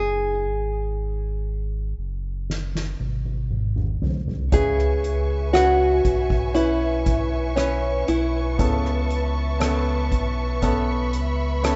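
A rough home-demo sound with a dull top end and moderate plate reverb frames this emotional, melancholic pop ballad excerpt in C# minor at 59 BPM, where a dark, fingerpicked nylon-string guitar carries the melody over a deep, full sub bass with octave from the start, a soft-mallet drum kit with a fat snare and boomy kick enters with a fill at 2.5 seconds, and a clear, polished baby grand piano and a lush, bowed symphonic string section with vibrato join at 4.5 seconds as the chords move from C#m7 to Aadd9, before the guitar stops at 10.1 seconds.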